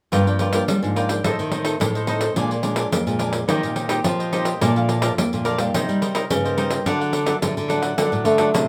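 A jingly pandeiro played with soft hands in a small room, a crisp picked cavaquinho, an up-front fingerpicked nylon-string guitar with fresh strings and finger squeak, and a dark fingerpicked nylon-string bass guitar in the background open this lively, yearning samba and choro fragment together in moderate studio reverb, before a mellow, breathy solo trombone with vibrato and scooped notes steps forward at 8.2 s.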